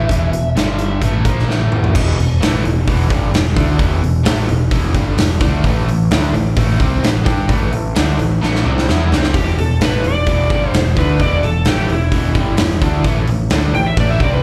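A gritty, smoky blues rock and southern rock excerpt in E minor at 130 BPM opens with a brief phrase from an overdriven slide guitar over a bright, double-tracked, crunchy guitar riff with slapback echo and a growling, round, overdriven picked bass that sits up front. A big acoustic drum kit of punchy kick, medium-tuned snare, hi-hat, crash and toms drives the straight 4/4 groove, with drum fills at 1.5 and 8.4 seconds as the harmony moves between Em and A5. At 9.3 seconds the warm slide guitar, carrying plate reverb and slapback echo, returns for a solo, all heard as a live gig through the venue's PA with club reverb.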